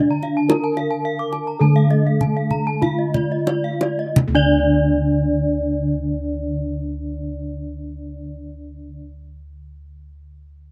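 A tight, saturated kendang, struck with hard hands and sitting up front, drives the opening of this hypnotic, brilliant Balinese gamelan excerpt, playing a drum fill from 2.5 s as the pace slows and dropping out at 4.8 s. Round, mid-forward bossed gongs played with padded beaters carry the bass, while a wooden-mallet bronze metallophone rings out the melody and a mellow, soft one struck with padded disc mallets plays accompaniment in the background, each shimmering with the beats of paired tuning. Above them, two horn-mallet metallophones spin arpeggios with slapback echo, one airy and bright, the other close-miked and full, in an outdoor recording with little reverb that is cut from a longer piece.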